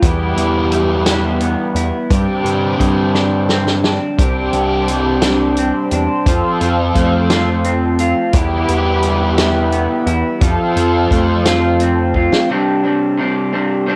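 A slow, straight 6/8 sway at 58 BPM carries this carefree, wistful indie rock excerpt, where a crunchy overdriven guitar and a twangy, slightly broken-up guitar through a small old amp play riffs up front over growling overdriven bass and a punchy vintage acoustic kit with drum fills, while a shimmering, detuned pulse-width pad enters at 4.2 seconds to hold soft chords in the background, all with a hazy cassette home-recording character and light reverb as the twangy guitar rings on alone until 14.0 seconds.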